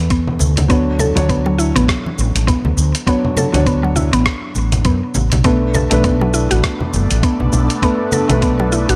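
A light reverb wraps this earthy, warm slice of organic downtempo, cut from a longer piece and moving at 101 BPM in 4/4 with a swung sixteenth-note feel. A felt-muted upright piano supplies soft, intimate accompaniment, its thick felt and audible action noise sitting beneath delay and sidechain pumping, while an up-front fretless electric bass growls with a round, hollow-body tone through analog chorus. A woody, percussive synth pluck spins detuned FM arpeggios with chorus and delay, and a very quiet bronze singing bowl adds meditative texture, ringing with slow, metallic beating. The gritty, compressed sampler-style drum kit brings cabasa, hi-hat and rim click from 0.1 seconds alongside a thumpy electronic kick, both re-recorded in a large room, as soft-handed congas ring close and dry in the background from 0.4 seconds. At 5.9 seconds an airy, breathy pad enters with slow-attack sustained chords colored by chorus and phaser, as the harmony moves from Aadd9 through Dmaj7 to Bm7.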